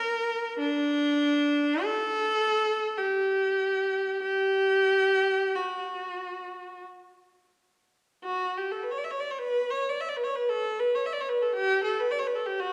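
A lone bowed viola opens this yearning, meditative classical fragment, its rich, focused vibrato tone sitting up front in a free, rubato three-beat flow that ranges from D4 to E5, wrapped in the lush reverb of a resonant recital hall before the phrase shifts into a new section at 8.2 seconds and breaks off at 12.7 seconds.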